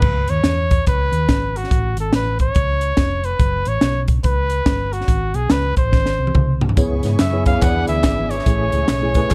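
A close-miked trumpet with light vibrato leads this soulful, solemn uptempo gospel excerpt in swung 4/4, backed by a round, punchy hollow-body electric bass and a crisp, up-front fusion drum kit with a high-tuned snare and punchy kick that plays a fill from 5.9 to 6.8 seconds. At 6.8 seconds the arrangement fills out with a mellow tine electric piano, a tonewheel organ with key click and fast rotary speaker in the background, a lush, softly bowed string section, and close, dry tambourine and group handclaps. The production is dark and warm, set in a small room.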